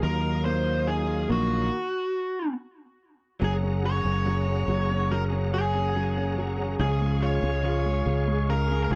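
This pop ballad excerpt moves at an unhurried 71 BPM in straight 4/4, with a hopeful, heartfelt mood and a dry, close 1970s-style studio sound touched by light reverb. A nasal, overdriven lead guitar with a parked wah carries the melody up front, its dark, picked tone sitting between Gb4 and Db5. Beneath it, a clear concert grand piano with deep, open bass provides the accompaniment, while a bright, reedy tonewheel organ holds sustained chords colored by chorus vibrato, key click and a fast rotary speaker. A clean, direct-recorded electric guitar picks soft, compressed arpeggios at a very low level, and a round, punchy fingered electric bass anchors the bottom from Gb1 to Eb2. The music drops into a stop between 1.7 and 3.4 seconds, then the harmony moves from Ebmadd9 to Gbadd9 and settles on Db for the closing bars.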